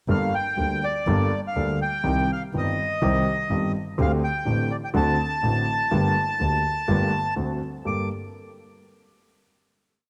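A marcato-in-four tango rhythm, played by an intimate concert grand piano with deep bass, long sustain and audible action noise and by a bowed double bass in the background, carries this short, complete tango in G minor at 124 BPM with a rubato feel. Up front, a reedy bandoneon with a cassette-tape coloring sings a motif-based melody in sentence-like phrases, while the bass adds vibrato and portamento, all set in a lush hall reverb on a home cassette recording. Passionate and tense, the piece moves through Gmadd9, Cm and D7 harmonies before settling on a final Gmadd9 chord at 7.9 seconds.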